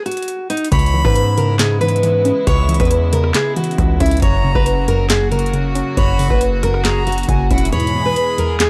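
Fingerpicked steel-string acoustic guitar carries the melody up front from the first moments of this dark, melancholic trap excerpt in C# dorian at 137 BPM with a half-time feel, joined by a booming analog drum machine with a deep kick, crisp snare, handclaps, rim clicks and metallic hats. From 0.7 seconds a distorted, aggressive 808-style bass, a soft round pluck with chorus, bowed strings in sul tasto and an airy, reedy flute line through analog delay fill out the sound over C#m7, F# and E. At 7.7 seconds the kick drops out as brief chorused synth brass stabs enter, all on a dry, gritty cassette-tape recording.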